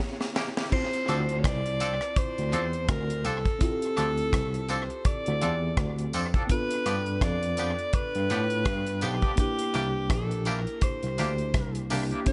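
Smooth and bittersweet, this lovers rock reggae excerpt moves at 83 BPM in D minor with a swung sixteenth feel. It opens on a short drum fill from the deep, dry reggae kit, whose high-tuned snare and tight kick sit up front under gated reverb and tape echo. A clear, jazzy alto saxophone carries the melody with vibrato and scooped notes. A lush, dreamy FM electric piano with a soft pad layer adds chorus-tinged chords over Dm7, G7 and C9, while a twangy electric guitar plays stabs through tremolo, background woodblock and tambourine add texture, and from 1.1 seconds a barky tine electric piano holds the bass with fast tremolo.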